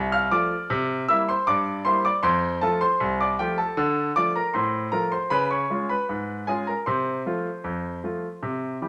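A bright concert grand piano carries this short ragtime fragment entirely on its own, sitting up front with a polished, present tone. Its range stretches from a deep bass low on the keyboard up into brilliant high notes. The mood is playful and cheerful, set in a straight two-four metre. The harmony moves from F to C7 and back, then turns to D minor and a D-flat seventh before settling on F over C at 6.9 seconds. A wet studio reverb surrounds the piano throughout the roughly nine-second clip, which is cut from a longer piece.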